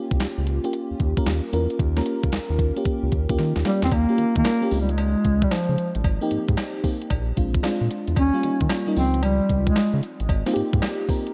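A bouncy, slick new jack swing groove at 113 BPM swings its sixteenths under a thumpy, overdriven 12-bit drum machine, a round, deep analog bass and a lush, chorused FM electric piano with a soft pad layer moving through Eb7, Dbmaj7, Abmaj7 and Bb7, while a drum fill at 3.4 seconds ushers in a mellow bass clarinet solo with vibrato and scooped notes through digital delay from 3.7 seconds and a close, dry cowbell in the background, all set in a dark production with light reverb.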